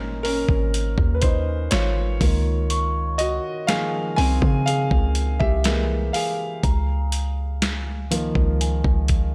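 A slow, straight 4/4 pulse is set by a dusty, sampler-style drum kit of hi-hat, thumpy kick and medium-tuned snare, which enters at 0.2 s with a compressed, gritty sound re-recorded in a large room. This short excerpt of smooth, romantic contemporary R&B rests on a deep, boomy 808-style bass, a sine tone with a noise layer whose fast attack decays under each note. A vintage-sounding grand piano with a smooth, warm tone plays a solo across the whole passage, moving through chords from Absus2 to Db69, then C7b13 and Db6. At 2.7 s a soft, bell-like celesta with felt hammers drifts in far behind, its sweet, airy high notes trailed by tape echo. Drums, bass and piano sit up front in a dry mix with little reverb.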